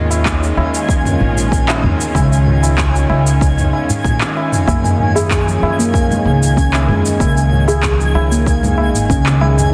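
Mystical and hypnotic, this excerpt of organic downtempo moves at 95 BPM in a straight 4/4, tuned to A4 = 438 Hz and built on Db69 and Gbmaj7 chords. A dark, woody pizzicato upright bass with steel strings carries the low end, while a tense, string-like drone of detuned sawtooth and sine with a noise layer sustains chords under built-in reverb and sidechain pumping. High above, a twinkling granular texture adds an octave-up shimmer on Ab5, sparkling through its own reverb. The rhythm pairs an overdriven deep kick and a layered deep house kit of handclaps, shaker and toms, both re-recorded in a large room, with a high-tuned, ringing tabla sitting close, dry and in the background. At 4.7 s a meditative handpan enters with fingertip arpeggios in a boxy small room, roughened by 12-bit sampler grit and tape echo, as the harmony shifts to Gbmaj7 before returning to Db69 at 7.2 s. A moderate echo-chamber reverb surrounds the mix, and the master is dense and heavily limited.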